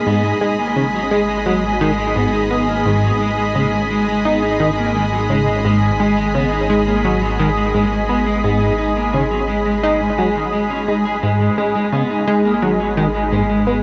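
A straight 4/4 pulse at 86 BPM carries this mysterious, cosmic stretch of sequencer-driven ambient space music in G# minor, cut from a longer piece and resting on a single G#m chord. A punchy, funky sawtooth bass riff with a filter pluck and a fast attack is bathed in lush chorus and tape echo, while a bright, thick, detuned unison pad sits up front holding sustained chords and a dark, slightly broken-up electric guitar picks arpeggios through tape echo. A mellow, pulse-width-modulated analog drone enters at 0.9 s beneath them, and a huge, wet reverb with an 8.4 s tail soaks the whole sound.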